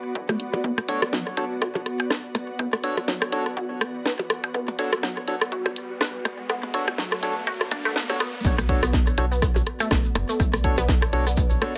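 Minimal techno at 123 BPM in B minor, cool and sparse with a swung 16th feel, this cut from a longer piece opens with a build-up to 8.4 seconds in which a bright, squelchy resonant blip pluck riff, coloured by phaser and tape echo, undergoes a filter sweep while a very quiet electronic riser sounds from 2.6 seconds; around it sit an ethereal, airy pad, a dark, woody FM bass in the background, a punchy analog kick, an up-front garage kit of hi-hat and cracking snare, up-front electronic percussion blips and rim click with digital delay, and hollow, percussive organ stabs with chorus, the pad, pluck and bass pumping to the sidechain, until the drop at 8.4 seconds brings in grainy, mellow maracas.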